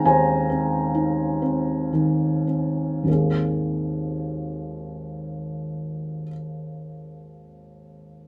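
A felt-muted upright piano sits up front in a small room with moderate reverb, its tone soft, muted and intimate. This tender, calm passage of lyrical classical solo piano, cut from a longer piece, moves in 6/8 with free rubato, slowing through its first 3.1 seconds. At 3.1 seconds it settles into a new section where the harmony opens onto an add9 chord, the piano's range spanning deep bass to the upper register before the excerpt stops at 8.3 seconds.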